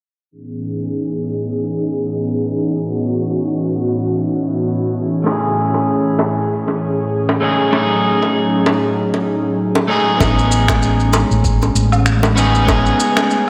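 An airy, breathy pad with chorus opens this relaxed sunset chillout excerpt in A lydian at 97 BPM, holding sustained chords through a filter sweep until 10.2 seconds. It is joined at 5.2 seconds by an up-front, slightly broken-up electric guitar with tape echo, and moments later by tight, high-tuned bongos in the background. A round fretless bass, a thumpy, gritty electronic kick, and a tape-warm shaker, finger snaps and woodblock arrive at 10.2 seconds, all soaked in a dreamy plate reverb.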